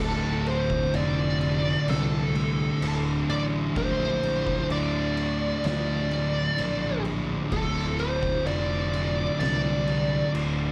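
Ominous and sludgy, this short stoner and doom metal cut crawls at 64 BPM in a straight 4/4, resting on a single D minor chord throughout. Up front, a dark fuzz lead guitar carries the melody between A4 and D5, its distorted tone shaped by wah, slapback echo and tape echo, and it stops at 10.3 seconds. Beneath it, two thick fuzz guitars grind out low riffs from D2 to D3, one distorted and sitting in the background, the other dark and very quiet. A fuzz-laden picked electric bass, overdriven and heard direct and amped, digs down as low as D1. The oversized low-tuned drum kit comes in at 0.5 seconds, with a boomy kick, fat snare and dark crash cymbal, all saturated, gritty and rolled off at the top in a bright stone room. The whole performance comes through a club PA with light reverb, giving it the murky feel of a live gig.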